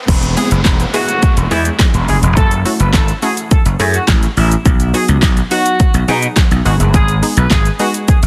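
A riser and downlifter sit in the background as a gritty slap bass and a punchy pop drum kit kick straight into a euphoric, carefree dance-pop drop, cut from a longer piece. The bass is growly and overdriven, pumping with sidechain, while the layered electronic kit brings a fat snare, metallic hats, handclaps, shaker and crash, overdriven and up front. A tight, vintage horn section carries the melody with light vibrato, its clear tone pumping and trailed by tape echo. Beneath it a lush, detuned sawtooth unison pluck strikes with a fast attack and decays through a phaser, moving over E, F#m7, B and G#m. A very quiet, distant group handclap in a large room joins at 0.7 seconds, and the whole is a dense, heavily limited modern master with light reverb.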